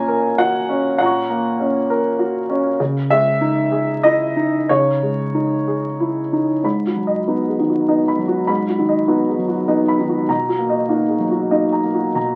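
The recording carries the crackle and aged character of a very old 78 rpm record, with a moderate studio reverb around the instrument. It is a short cut from a longer neoclassical minimalist piano piece in G# minor, intimate and melancholic in mood, moving in 3/4 at roughly 90-102 BPM with a rubato feel. A solo upright piano carries the whole passage, heard up front with a woody, slightly detuned tone and audible action noise that makes it sound natural and close. Its range spans G#2 to C#6, moving through F#/A# and C#madd9 in the opening phrase. At 6.6 s the music shifts to a second section built on G#m7 and then Bmaj7, which keeps the wistful, private atmosphere to the close.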